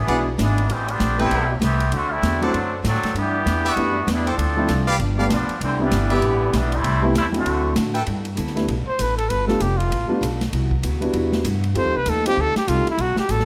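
Big band swing in G major, this excerpt moves at a brisk 195 BPM with an energetic, swinging lilt. For the first 8 seconds a muted trombone section carries the lead, its straight-muted tone nasal and brilliant with light vibrato, while a bright trumpet section adds stabs above it. Underneath, a woody, growly upright bass sits up front, joined by a concert grand piano with deep bass and a boxy, picked steel-string acoustic guitar tucked in the background. A polished drum kit with a punchy kick, medium-tuned snare, hi-hat and ride cymbal keeps the swing going throughout. From 8.9 seconds a breathy solo trumpet takes the melody, whispered and intimate with vibrato and a soft attack, over richer harmonies such as Cmaj9#11 and F9. A moderate, large studio reverb gives the whole band a generous sense of space.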